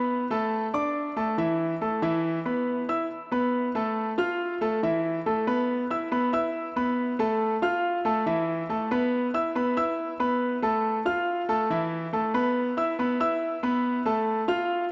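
A dreamy mix soaked in plate reverb with a long 3.1-second tail surrounds a clear, intimate grand piano that sits up front, its natural tone carrying audible action noise. In this nostalgic Latin solo piece, cut from a longer work, the piano spans E3 to F6, moving through open suspended and power-chord harmonies before settling at 3.1 s into a repeating cycle that alternates Asus2 with F/A and E5.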